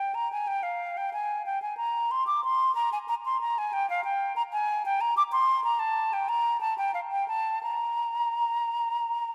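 The rhythm moves freely in rubato over a loose 4/4 pulse, drifting between 85 and 96 BPM. This is a short cut from a longer piece, a classical, baroque-style fantasia for unaccompanied flute with a flowing, serene mood. A single concert flute carries the whole passage from 0.0 to 9.3 seconds, staying high between F5 and D6 with vibrato. Its tone is airy and hollow, with a crisp attack, and close miking places it up front. A wet church reverb with a long 3.5-second decay surrounds the line, and the tuning sits at A4 = 442 Hz.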